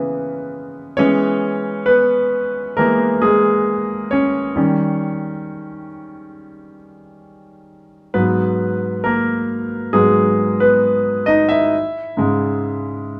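A recording with a wet studio reverb and the feel of a live room frames this pop piece, cut from a longer work and carrying a longing, emotional mood. A clear, polished concert grand piano plays solo up front throughout the 13.2 seconds, its deep bass and short sustain giving each chord a present edge. The harmony moves from C#m7 through E and D#7 to G#m7, settling on E6 at 11.7 seconds.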